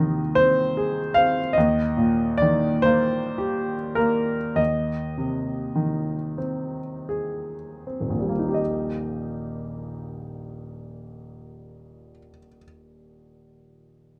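A clear grand piano opens alone on an Ab-over-Eb chord, settling to Eb by 1.6 seconds in a tender, dreamy romantic nocturne that flows in a rubato six-eight lilt. The music slows through its first phrase until a new section begins at 8.6 seconds, the piano ranging from deep bass notes up into its middle-high register. Heard up front and intimate through close, detailed microphones and light reverb, the natural piano tone carries audible action noise, and the piece is cut from a longer work.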